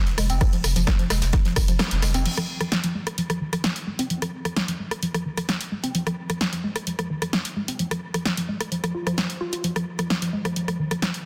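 A dense, heavily limited mix with light reverb carries this dark, driving slice of peak-time techno at 130 BPM in F minor. It opens on a drop, where a saturated sub bass with sidechain pumping, a punchy layered kick re-recorded in a small room, and a very quiet brush kit play briefly; the kick drops out at 1.8 seconds on a band accent, and the bass stops at 2.3 seconds. Throughout, from 0.1 to 11.2 seconds, an overdriven, dry analog drum machine, with a punchy snare, hi-hat, rim click, tambourine, ride and crash, drives on beneath a woody, wave-folded pluck riff that runs from 0.2 to 11.1 seconds, colored by subtle chorus, digital delay and a filter sweep.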